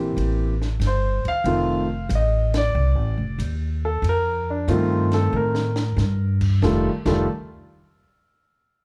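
A swinging 4/4 groove at 93 BPM, with a firm swing on the eighth notes, drives this playful jazz piano trio fragment in F mixolydian, cut from a longer piece and recorded with the band playing live in one room with light reverb. The grand piano carries the melody up front with a warm, long-sustaining tone, while the woody pizzicato upright bass sits close beside it and the compact cocktail kit stays darker and lower in the mix, with a high-tuned snare, a punchy kick, and a rolled-off top on the hi-hat, ride and crash. The harmony moves from C7 to F7, the band hits an accent at 2.4 s, and a drum fill at 5.3 s leads into a new section on F9 at 6.6 s.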